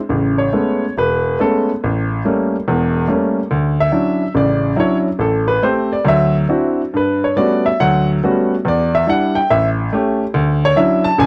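At 141 BPM in 4/4, the eighth notes swing at 68%, yet the time bends freely in a rubato feel, giving this short solo jazz passage a sophisticated, swinging mood. A lone grand piano plays throughout, from 0.1 to 11.3 seconds, ranging from a deep E1 up to A5. Its tone is clear and natural, placed up front in an intimate, dry, close 1970s-style studio sound with little reverb, so the mechanical noise of the action can be heard beneath the notes. In A major, the harmony moves from Amaj9 through A7b9 to Dmaj9, then passes through Am7, D9 and Gmaj9#11 before Em7 and A7 lead back to Dmaj9 at 10.3 seconds. The passage is cut from a longer piece.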